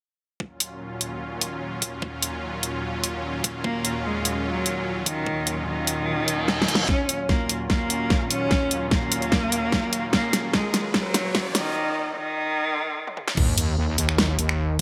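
Heavy wobble dubstep in Eb minor at 148 BPM with a half-time feel, aggressive and weighty, cut from a longer piece. A lush, detuned supersaw pad holds an Ebm7 chord from 0.4 seconds, pumping against the sidechain under a low-pass filter, while a knocking electronic kick joins a layered, tape-warm drum kit of huge snare, bright hats, crash, finger snaps and toms that sits up front. At 3.6 seconds a rich bowed cello enters with the melody, expressive with vibrato and portamento and trailed by tape echo. A reverse cymbal swells in at 6.2 seconds, and from 6.9 seconds a build-up takes hold as a filter sweep moves across the pad and a riser climbs alongside drum fills, with a sub drop in the background, before a break at 11.8 seconds. The drop lands at 13.4 seconds with an impact and a saturated, chorused wobble bass on Eb2, heavy and up front, all set in a moderate digital room reverb.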